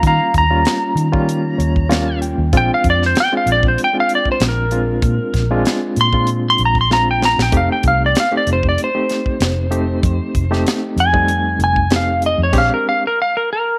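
Soulful and gritty, this straight-eighth soul blues in Bb mixolydian moves at 96 BPM, with a clean, compressed lap steel guitar up front playing a slide solo with volume swells across the whole 13.8 seconds. Underneath, a barky reed electric piano with light overdrive and fast tremolo adds a fill at 1.3 seconds; a dark, foam-muted fingered bass sits round and punchy; and a tight, polished funk drum kit with bright cymbals and a high-tuned snare breaks into a fill at 6.9 seconds. The chords pass from Eb7 to Bb7 and F7 before landing on Bb13, all in a light studio reverb.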